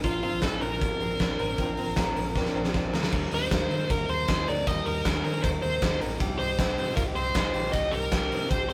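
A rough rehearsal-room sound with warm saturation and moderate reverb frames this youthful, breezy jangly indie pop fragment at 156 BPM, where an overdriven, shadowy lead guitar carries the melody up front over punchy, bright-cymbaled rock drums, a round, foam-muted vintage bass and a compressed, clean picked guitar playing background arpeggios, while a worn, reedy electric piano with fast tremolo drops out at 3.2 seconds after a drum fill at 2.4 seconds and a very quiet, warbling organ-like string ensemble enters at 3.1 seconds with sustained chords.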